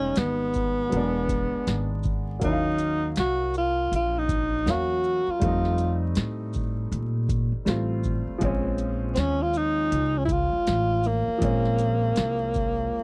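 A breathy tenor saxophone sits up front, carrying the melody from Bb3 to Gb4 with a mellow subtone, vibrato, scooped notes and a smooth top in a jazz solo style. This is a cool, nocturnal jazz-hop excerpt at 80 BPM in 4/4, with a 62% swing on the sixteenths and tuning set to A4 = 437 Hz. Beneath it, a clear upright piano, worn and slightly detuned, plays accompaniment over a chord progression moving from Fm7b5 through E7#11 and Ebm9 to F7 and Bbm9. A pizzicato upright bass with gut strings adds a woody, thumpy low end down to E1. A booming analog drum machine enters at 0.2 seconds with a deep kick, crisp snare, metallic hi-hats, shaker and a tape-warm tone. The sound is dry and close, like a 1970s studio recording with little reverb and a layer of vinyl crackle, and the excerpt ends at 13.0 seconds.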